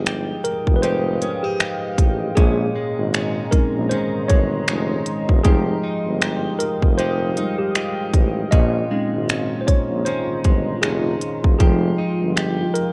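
Contemporary R&B at a relaxed 78 BPM in F minor, this late-night, sensual excerpt sways with a swung sixteenth-note feel and a worn, warbling cassette-tape character with pitch drift, set in light digital ambience. A mellow tine electric piano carries the lead, slightly out of tune and worn, moving between Fm9 and Bbm11 chords. A clean, direct-recorded electric guitar picks compressed arpeggios bathed in lush chorus and tape echo, while a deep, moody pad of detuned sawtooth and sine layers with a sub octave enters at 0.3 seconds with slow attack and long release, softened by chorus and its own reverb. A vintage tuba with light vibrato supplies the bass line in a jazz style. Up front, an electronic trap kit drives the groove with a hard-clipped kick, crisp hi-hats and finger snaps.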